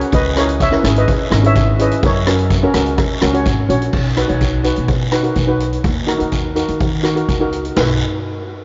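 A shimmering lead steel pan with tape echo carries the melody for the first 3.4 seconds of this bouncy, sunny calypso excerpt in B major at 126 BPM, over a metallic double-seconds pan accompaniment that sits up front with a boxy small-room sound. Pizzicato upright bass on steel strings gives a woody, thumpy low end, while a street-band drum kit with a boomy kick, medium-tuned snare and dark cymbals keeps a straight 4/4 feel and a raspy guiro adds texture. The chords move from C#m7 and F# to B and D#m, and the mix is dreamy and soaked in huge ambient reverb, with a dim, muted top end.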